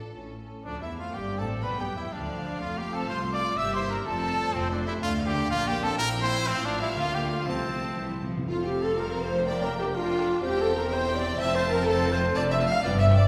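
In a quick, rubato two-beat pulse, this graceful, cheerful classical-period orchestral passage, cut from a longer piece, sets a smooth violin melody over a focused second violin line, clear violas, mellow French horn chords and a bass of rich cellos and distant, lush double basses, while an airy flute and up-front trumpet stabs join at 0.7 s, hard-mallet timpani add a fill at 8.0 s, and a dark bassoon enters at 9.0 s, inside a reverberant church or concert hall.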